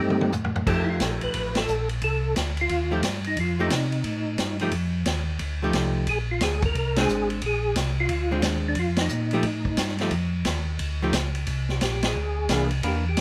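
A percussive tonewheel organ carries the melody in this bluesy, soulful soul jazz organ trio excerpt, its round, clean voice lit by third-harmonic percussion, chorus vibrato and a slow rotary speaker. A second, mellow tonewheel organ holds down the bass line up front, dark and clean with the same chorus vibrato and slow rotary swirl. A vintage acoustic drum kit opens with a short fill and then swings in four, with a punchy kick, a high-tuned snare, dark cymbals and a rolled-off top that sits mid-forward in a studio room. From 0.7 seconds a miked, amplified hollow-body archtop guitar adds picked accompaniment with a shadowy electric tone. The band hits sharp accents together at moments such as 1.5 and 12.0 seconds as the ninth-chord harmony moves through a bluesy cycle, all under a light reverb.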